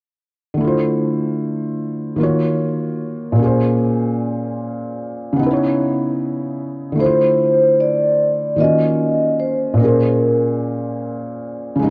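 This hip hop piece moves at a relaxed 75 BPM in 4/4 with a swung sixteenth-note feel and a reflective, melancholic mood. A felt-muted upright piano enters at 0.5 seconds and carries the accompaniment on its own through a chain of minor ninth chords: Dm9, Ebm9, Bbm9 and C#m9. The piano sits up front with a soft, intimate tone, audible action noise and a cassette-tape haze that rounds off its top end. At 7.0 seconds a vibraphone played with soft mallets takes the melody as Dm9, Ebm9 and Bbm9 return. The vibraphone's ringing, metallic tone carries a slow motor vibrato and a vintage, band-limited character before it stops at 10.6 seconds. A moderate plate reverb and a dark, warm production give the piece a hushed, late-night atmosphere.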